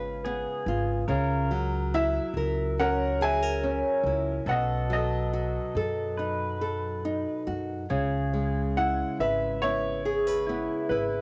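A home cassette recording with light reverb frames this intimate, reflective acoustic folk-pop ballad excerpt, where a brilliant upright piano carries the melody up front with its action noise audible, fingerpicked nylon-string guitar with fresh strings and a dark, woody pizzicato upright bass support it, and a quieter, twangy pedal steel guitar adds a clean, compressed second line of slides and volume swells over chords moving from C#7 to C#m7.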